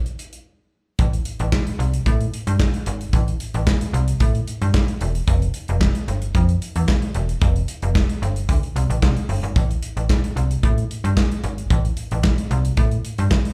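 Early-eighties boogie funk with a danceable, late-night mood, cut from a longer piece, where an up-front acoustic drum kit of tight kick, medium-tuned snare, hi-hat and handclaps starts at 0.1 seconds and is joined at 1.0 seconds by a snappy, metallic, slap-like FM bass with a fast, decaying attack, all heard as a live gig through the venue's PA with club ambience and little reverb.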